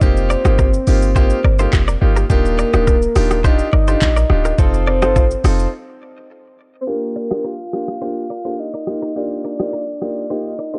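A straight 4/4 afrobeats groove at 105 BPM in Bb major opens this joyful, romantic passage, driven by an up-front electronic drum kit with a knocking kick, smooth hi-hats, handclaps, rim clicks and shaker, all roughened by vintage 12-bit sampler grit, while a boomy, sine-like 808-style bass sits beneath until it stops at 5.7 s for a break. A clear, polished grand piano plays a short-sustained accompaniment under a round, warbling synth lead layered in octaves with chorus, vibrato and digital delay, and a bright, twangy direct-recorded electric guitar riff enters at 0.3 s with its own delay. The dark, dry production uses a low-pass filter, and a filter sweep carries the closing section from 6.9 s as the harmony moves through F9sus4, Ebmaj9, F7 and Bb6.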